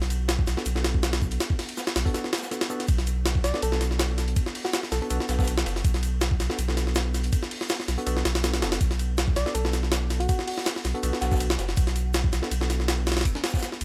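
A swung, frenetic jungle groove drives this dark drum and bass excerpt, with a gritty, pitched-up sampler kit of thumpy kick, high-tuned snare and ride up front over a smooth, rolled-off breakbeat kit of hats, shaker and snare in the background, a deep, thick sub bass holding a Bm7 mood, a worn, slightly out-of-tune electric piano stabbing through overdrive and dub echo from 0.6 seconds, and a round, gentle FM lead with chorus and vibrato drifting in at 3.4 and 9.4 seconds.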